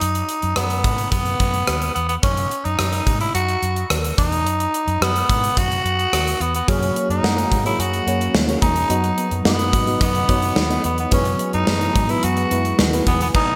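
A straight 4/4 pulse at 108 BPM from a punchy, gated 80s drum kit with bright cymbals and rim clicks drives this romantic, uplifting 1980s-style pop excerpt, where a raspy, up-front tenor saxophone sings the melody over a dark, foam-muted fingered bass until a mellow FM electric piano with chorus and a clean, compressed electric guitar riff join at 6.7 seconds on F#add9, B/F# and E/F# chords, all bathed in a lush hall reverb and bright digital sheen.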